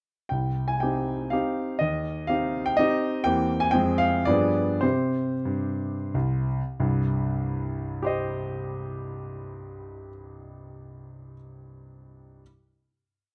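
A dotted, rubato triple-time lilt carries this brief, nostalgic and wistful romantic dance for solo grand piano, its smooth, vintage tone sitting up front in a dark, reverberant studio as a single-line melody rides over bass and chords that stress the second or third beat, moving through a minor-key progression that slows from 2.5 seconds before settling on a final chord held from 6.8 seconds.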